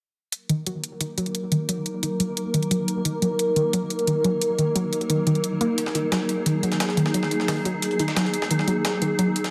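Dark technical drum and bass at 176 BPM in Eb minor, this short cut from a longer piece feels mechanical and tense, with an overdriven, bright electronic hi-hat entering at 0.3 seconds under a warbling, lo-fi sawtooth pluck that plays arpeggios through chorus and digital delay while a filter sweep runs across it. From 1.0 seconds a swarming, detuned drone holds sustained chords up front, its granular texture evolving with a moving notch, and at 5.8 seconds a gritty, pitched-up breakbeat sampler kit adds compressed hats and a medium-tuned, tape-warm snare. A lush hall reverb surrounds the mix, and the whole passage rests on an Eb minor chord.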